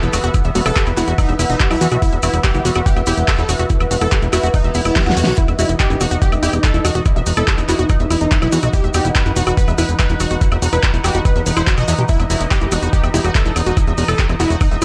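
This psychedelic trance excerpt opens at once on a dense, intense and alien wall of sound at 143 BPM in E harmonic minor, its tuning set slightly low at A4 = 436 Hz. A punchy, airy supersaw stab carries the melody through phaser, gritty 12-bit sampler coloring and tape echo, while a bright, lush unison pluck with a warbling, vintage edge plays a riff alongside it, also echoing on tape. A bubbling texture of resonant, randomly stepped filter chords and a dark, nostalgic, lo-fi pad sit further back in chorus and reverb, and these two parts, along with the stab and pluck, pump against the beat. Underneath, a fat, saturated analog bass with a wave-folded bite holds the low end up front, and from 0.3 seconds a knocking electronic kick, re-recorded in a small room, drives hardest in the mix. A big-room dance kit adds a huge snare, handclaps, hi-hat and woodblock, grainy maracas murmur in the background, and a very quiet reverse cymbal rises from 4.7 seconds into a drum fill at 5.0 seconds.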